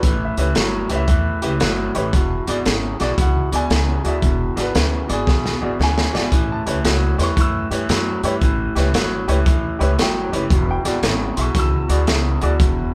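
Recorded live in one room with light reverb, this rollicking, swaggering electric blues shuffle is cut from a longer piece. A gritty, saturated breakbeat kit sits up front with a tight kick and rolled-off top, breaking into a fill at 5.3 seconds. Over it, a twangy, slightly broken-up guitar riff from a small old amp rides above woody pizzicato upright bass, while a polished, present upright piano adds long-sustaining accompaniment.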